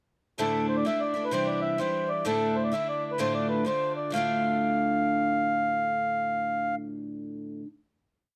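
Celtic folk polka in D minor at 129 BPM, a short, spirited, dark and lively piece in 2/4 with swung eighths. A reedy, round accordion carries a motif-based melody of song-like phrases up front. A boxy, shimmering twelve-string acoustic guitar, octave-doubled and picked in eighth-note strumming on open chord shapes, moves through Dsus2, Cadd9 and Dm before settling on a final chord at 4.1 seconds and ringing on until 7.7 seconds, all captured with close, detailed microphones and little reverb.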